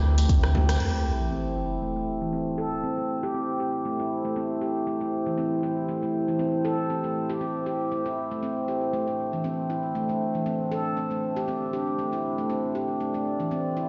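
The recording sounds as if it is played through a big sound system in a bare stone room, soaked in a lush hall reverb with the top end dulled above 7.5 kHz. This driving, earthy afro house excerpt moves at 118 BPM in A minor, swung on the sixteenths. A dark, moody analog pad holds sustained chords with subtle chorus and sidechain pumping throughout, moving from D5 to Am7 and back to D5. Up front, a ringing stainless-steel handpan plays meditative arpeggios with delay under a low-pass filter sweep, while a smooth, gliding sawtooth synth bass sounds only in the opening moment. In a brief opening flurry, a produced afro-pop kit with metallic hats, crash and rim click sits in the mix alongside a jingly tambourine and bright, thin-skinned congas in the background. A band accent lands at 0.7 seconds, and an electronic sub drop impact follows from 0.8 to 2.8 seconds.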